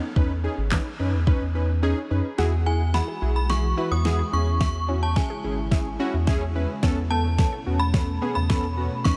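A straight 4/4 groove at 108 BPM from a smooth R&B drum kit, with soft kick, fat snare and handclaps, drives this upbeat, carefree dance-pop excerpt in E major, alongside a deep, round analog bass and detuned sawtooth analog keys with chorus, both pumping under sidechain; the drums drop out at 1.8 s before a build-up where a nasal, bright unison pluck enters with tape-echoed arpeggios at 2.4 s, a warbling, inharmonic synth chime rings out the melody with tremolo and tape echo, and a glassy FM pad with phaser and ensemble chorus swells in the background at 3.1 s over chords moving from Eadd9 to C#m to Aadd9/E.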